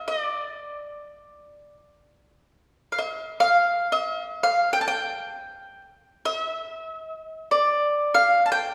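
A wet recital-hall reverb with a long tail and a touch of small-room ambience gives this excerpt a distant, airy setting. Within it, a lone picked acoustic mandolin sits up front, its double strings sounding bright and woody as it plays a melancholic, hypnotic Persian modal line in the upper register. The phrase is heard once and then returns from 2.7 seconds, carrying through to the cut at 8.7 seconds.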